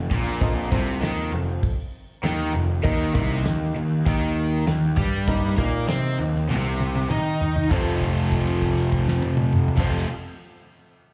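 Heard through a club PA with light reverb and a small-room ambience, this confident, sunny classic rock clip in F mixolydian moves at 99 BPM in a straight 4/4, riding on an F to Eb5 chord progression. Two crunchy, overdriven picked electric guitars play the riff, one carrying a slapback echo, over a growly, up-front fuzz bass and a dry 70s kit with a fat snare and tight kick. A woody upright piano with its own slapback echo sits in the background, and a drum fill from 6.5 to 7.7 seconds leads back to F and a held note lasting until 9.8 seconds.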